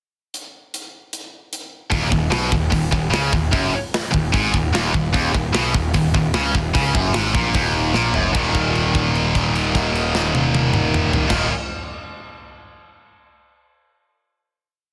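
A tight metal drum kit drives a straight 4/4 at 150 BPM, opening alone with a pickup bar at 0.3 seconds before a mid-forward big-room groove of kick, snare, hi-hat, toms and crash takes over, its tight kick softly clipped. At 1.9 seconds a heavy, aggressive Eb minor riff arrives on a bright, double-tracked high-gain guitar, doubled by a growly, fuzz-laden picked bass playing driving eighth notes. A drum fill at 8.0 seconds leads into a held Eb5 power chord that rings out to close this short heavy metal piece, all inside a dense, heavily limited modern master.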